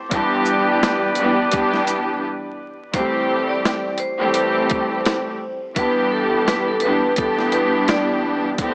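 A moody, dark boom-bap hip-hop fragment opens with a lush, bowed string section carrying the accompaniment through cassette-tape coloring, while a bright, tight saxophone section fires vintage jazz-style stabs with tape echo and a gritty, pitched-down sampler drum kit thumps out kick, high-tuned snare, hi-hat and shaker on a swung 16th feel. After a short break at 2.2 seconds, a vibraphone played with hard mallets enters at 2.9 seconds carrying a metallic, ringing melody with slow motor vibrato and tape echo, as the harmony moves from Em7/G to Am7 and back. Small-room ambience, vinyl crackle and a small-speaker sound frame the mix.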